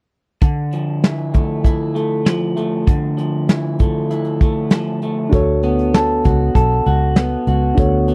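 Indie and bedroom pop at 98 BPM with a laid-back, sunny feel, this dry, close 1970s-style cut opens at 0.4 seconds with a slightly broken-up, picked electric guitar through a small old amp, carrying subtle chorus and warbly pitch drift over a soft brush kit with a punchy kick and rolled-off top, before a reedy, slightly out-of-tune electric piano with cassette-tape wear and a round, foam-muted fingered bass join at 5.3 seconds as the harmony moves from Dmadd9 to Bm7.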